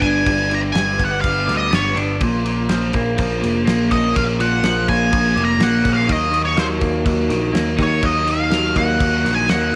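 A straight 4/4 pulse at 124 BPM drives this trippy, hypnotic psychedelic rock fragment, cut from a longer piece and tuned slightly sharp to A4 = 441 Hz. A cloth-damped, thuddy acoustic kit keeps time with a fat snare, tight kick and dark crash cymbal, while a picked electric bass sits beneath it, round and punchy, moving between F1 and Eb2. Up front, a twangy, slightly broken-up electric guitar through a small old amp plays a bright, lo-fi riff coloured by phaser. Taking the solo across the full 9.8 seconds, an octave-fuzz lead guitar sings a dark, distorted melody between C5 and Bb5, shaped by wah and a slapback echo. Underneath, a very quiet vintage combo organ holds mellow sustained chords with heavy vibrato as the harmony moves from G to Bbm at 2.2 seconds and on to Ebm at 6.1 seconds, all set in a small room ambience.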